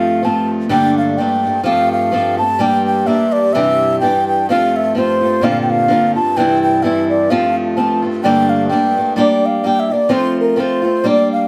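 Celtic polka folk, dark yet lively and spirited at 128 BPM with a swung 2/4 feel, in which a mellow, pure wooden baroque flute carries the vibrato-tinged, tongued melody up front over a boxy, woody fingerpicked swing guitar with old strings, while a reedy, shimmering musette accordion holds a quiet drone until 9.2 seconds, all set back in a small, wet room in this brief cut from a longer piece.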